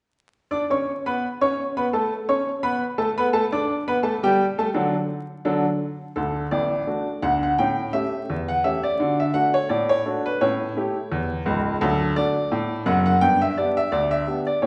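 A bright upright piano plays solo from 0.5 to 14.7 seconds, its brilliant, woody tone sitting up front in this jaunty, cheerful ragtime fragment in D major at 85 BPM in 2/4, with a light swing on the sixteenths. The tuning sits slightly below standard pitch, and the piano reaches from deep bass up to the high treble. The opening settles on D5 before the second part moves through D, A7 and G chords from 6.2 seconds, all bathed in a generous recital-hall reverb with vinyl crackle and a muffled top end.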